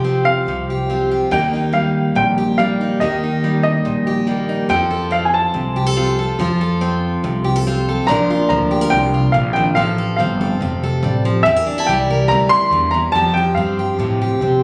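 A woody upright piano with plate reverb and tape echo carries the high melody over a bright, up-front picked dreadnought acoustic and a growly pizzicato upright bass from the first beat of this sunny, down-home honky-tonk and classic country clip at 142 BPM, tuned to A4 = 438 Hz, moving through Eb and F before a second section at 8.1 s runs Bb, F and C7 to land on Fadd9, all captured on a phone in a club room with compression.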